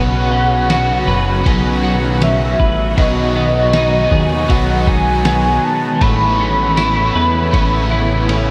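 Awash in a moderate concert-hall reverb, this floating, dreamy dream-pop excerpt at 79 BPM in B mixolydian sets a velvety, detuned synth lead with chorus and delay over a shimmering, ethereal pad, picked, brilliant overdriven guitar with tremolo, clean arpeggiated guitar through ensemble chorus and delay, and a fat, thick analog bass up front, while a muffled, tape-warm sampler-style drum kit with kick, snare, ride and tambourine enters at 0.7 seconds and lands a fill at 8.3 seconds, moving from Bsus2 through G#m7/B to Aadd9.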